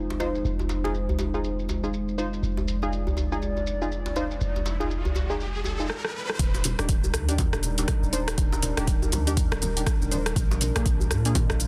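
A moody analog pad with a slow attack opens this spiritual, earthy afro house excerpt at 121 BPM in 4/4, its detuned square and sawtooth layers colored by chorus and phaser, pumping against the sidechain while a filter sweep runs across it. Beneath it, a boomy 808-style bass with a noise layer and tube saturation holds the low end. An overdriven deep house kit of hi-hat, rim click and shaker, its percussion, snare, hats and room darkened by low-pass filters, joins a medium-tuned djembe in a swung sixteenth-note feel. Round sawtooth keys play short stabs through chorus and digital delay, also pumping, over harmony that starts on Fm7. An electronic riser sounds from 4.1 seconds, and a drum fill leads to the drop at 6.4 seconds, where a deep, overdriven electronic kick and bright, close congas in the background enter as the chords move to Ebmaj7 and then Bb7. The dense, heavily limited master sits in a digital ambience.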